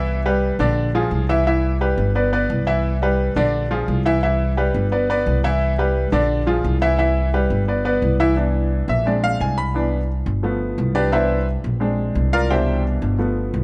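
A bright, worn baby grand piano with audible action noise and a dark, woody pizzicato upright bass open this festive, joyful salsa cut together at 174 BPM in C major, both up front in light reverb, cycling through Cmaj7, Bb7 and G chords until the piano takes a solo at 8.4 seconds that runs to the close at 13.6 seconds.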